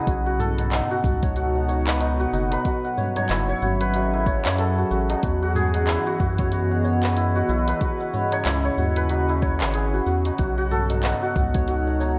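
Mystical and earthy, this organic downtempo excerpt moves at 93 BPM in 4/4 with a loose 16th-note swing. A hammered santur sits up front, its shimmering, ringing arpeggios roughened by vintage 12-bit sampler grit and trailed by tape echo. Beneath it, a warbling, nostalgic pad holds sustained chords with a detuned, lo-fi haze, chorus and built-in reverb, breathing with sidechain pumping. A round analog bass adds a deep, dark foundation with a fast attack, while a soft electronic kick and a layered deep house kit of cabasa, handclaps and dark hats keep the groove, both re-recorded in a small room. A high-tuned tabla rings distantly in the background from a large room as the chords move from B to Emaj7 at 5.2 seconds, C#madd9 at 7.8 seconds, and back to B, all under a light reverb.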